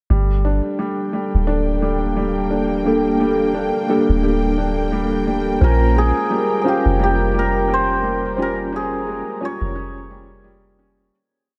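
Heard in a small room with light reverb, this brief, complete trip hop piece is cinematic and hypnotic, with a gently swung groove in 4/4. A soft, round 808-style bass sits up front with long, dark notes. A felt-muted upright piano, intimate and with audible action noise, plays a six-step arpeggio loop that drifts against the bar through tape echo. Behind them, a detuned sawtooth analog pad holds moody chords with chorus, and shortly after the start a tense, string-like bowed drone adds a held high note with vibrato and its own reverb. A reedy electric piano enters at 2.8 seconds with rootless held chords and syncopated pushes, colored by harmonic tremolo and tape echo. At 5.6 seconds the harmony shifts from Gmadd9 to Bbm7 as a shimmering, ringing hammered dulcimer brings in a motif-based melody, and the whole piece fades out from 7.5 seconds.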